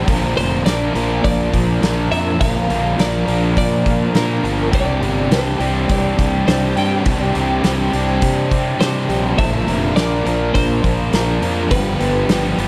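Hazy and dreamy, this short excerpt cut from a longer shoegaze and dream pop rock piece moves in a straight 4/4 over chords of Bb, Csus2 and back to Bb before a G7. Two overdriven guitars carry the riff together, an electric one coated in lush chorus and a hollow-body semi-hollow treated with reverse reverb, both picked and warm in tone. Underneath, a fingered electric bass growls with fuzz and overdrive, bright and direct, while a loose indie drum kit of hi-hat, punchy kick and medium-tuned snare sits up front in a pumping small room from 0.1 seconds. A clean, compressed twelve-string electric guitar enters at 0.4 seconds with a twangy picked melody through analog delay. Very quiet beneath it all, a fingerpicked twelve-string acoustic guitar shimmers with boxy, octave-doubled arpeggios, finger squeak and a hint of swing, and the whole mix is set in a moderate recital hall reverb with small room ambience.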